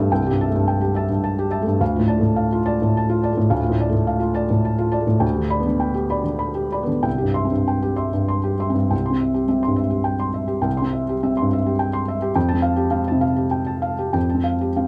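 A felt-muted upright piano plays alone throughout this neoclassical minimalist piece, its soft, mellow tone sitting up front and intimate, with audible action noise and a short sustain. Moving in a three-beat metre with free rubato, the harmony passes from Am7/C through Dm and G/D to C, and a new section begins at 8.9 s before settling onto Fadd9 at 12.4 s. Light reverb and a dark production frame the hopeful, tender mood of this passage cut from a longer piece.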